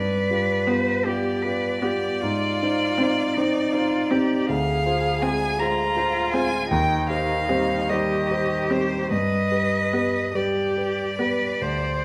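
A slow, rubato 12/8 sway at 46-54 BPM in dotted quarters carries this melancholic, solemn passage from a romantic piano quartet movement, heard as a brief cut from a longer work. Up front, a natural-sounding grand piano lays down the accompaniment, reaching deep into the bass, while a single bowed violin sings the melody with a focused, vibrato-laden tone. Beneath it, a solo cello traces a second line that is smooth and even, with a rich vibrato. Entering at 0.7 s and playing until 11.5 s, a solitary viola sits in the background with warm, expressive vibrato and gentle portamento. The harmony moves from G7 through Ab, Dm7b5 and Cm/Eb before settling on G, and a moderate recital hall reverb gives the ensemble a natural sense of space.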